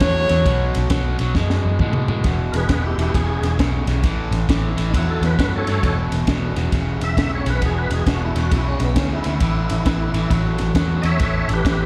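Heard through a live venue's PA with small-room ambience and a recital hall's reverb, this rollicking yet laid-back electric blues shuffle opens on a clear, vibrato-laden tenor saxophone phrase with scooped notes and slapback echo that ends at 0.8 seconds, while a bright, crunchy overdriven guitar riff, a round, up-front foam-muted bass and a compact, dark cocktail kit with a high-tuned snare and punchy kick carry on throughout, a drum fill arriving at 1.4 seconds before a full tonewheel organ with slow rotary speaker, chorus vibrato and slapback echo joins at 2.5 seconds.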